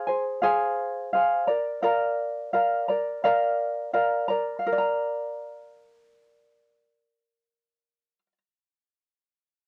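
A bright, thumb-plucked tenor ukulele sits up front with cassette-tape color and light reverb in this heartfelt, easy-going pop fragment at 85 BPM, playing with a gentle 16th-note swing in Bb mixolydian as it moves from Fm to Bb, with the homespun feel of a cassette recording made at home.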